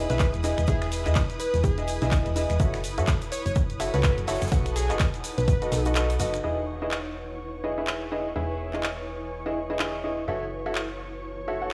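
Euphoric and feel-good, this piano house cut from a longer piece swings its sixteenths at 125 BPM, moving through Emaj7, F#m7 and B7. A woody, slightly detuned upright piano carries the riff up front, passed through a low-pass filter and analog delay, and from 6.4 seconds a filter sweep moves across it as the second section begins. Beneath it a round, dark FM bass pumps with the sidechain, while a silky sawtooth string pad and a blurred granular cloud pad with its own reverb sit in the background, both breathing to the same pumping. A catchy, plucky unison lead with vibrato and analog delay sings through the first half, ending at 5.9 seconds. The punchy, tape-warm electronic kick drives up to 5.6 seconds, and a layered garage kit of finger snaps, handclaps, hi-hat and shaker keeps going, accompanied through the first half by a very quiet, airy acoustic kit with a high-tuned snare. The mix sounds dry and gritty, with light studio reverb and a sense of the room.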